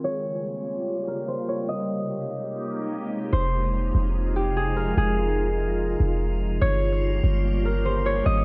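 Ethereal and hazy, this atmospheric cloud-rap excerpt in a half-time feel pairs a bright, ringing concert harp melody softened by a low-pass filter and tape echo with a glassy FM pad of chorused, phased sustained chords, and after a filter sweep a deep, boomy 808-style bass enters at 3.3 seconds beneath chords moving from Gm7b5 and Abmaj9 to Fm7, all in an echo-heavy mix.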